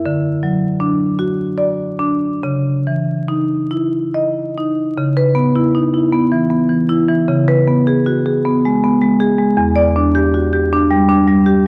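A rubato pulse in 3/4 moves freely between 68 and 80 BPM, giving this contemporary classical fragment for solo marimba a loose, breathing sway. Played with medium hard mallets across a range from E2 to D#5, the marimba sits up front with a warm, mid-forward tone, and its playful character colors the C# minor harmony. The opening passage moves from D to C#madd9, and a second section begins at 5.0 seconds, passing through C#m7 and G#m/C# before settling on Em7 at 9.6 seconds. A moderate scoring-stage reverb lends the instrument some space, while the whole recording carries the worn character of old cassette tape, with warbly pitch drift and a layer of vinyl crackle. It is a short cut from a longer piece, lasting 11.7 seconds.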